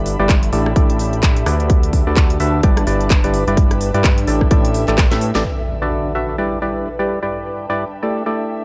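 Piano house at 128 BPM in D major with a swung, joyful feel, built on a hollow, percussive organ stab riff with chorus and tape echo, a fat detuned sawtooth bass, and an ethereal, airy pad shimmering with ensemble chorus and phaser, all pumping against a punchy, up-front electronic kick and a house kit of cracking snare, crisp hats, handclaps and rim clicks. Chords move through Em7/G, A7sus4, D6 and G6, and a drum fill from 5.0 seconds and a band accent at 5.3 seconds lead into a second section where the drums and bass stop and an electronic impact sounds under the organ and pad. The sound is dry and gritty, cut from a longer piece.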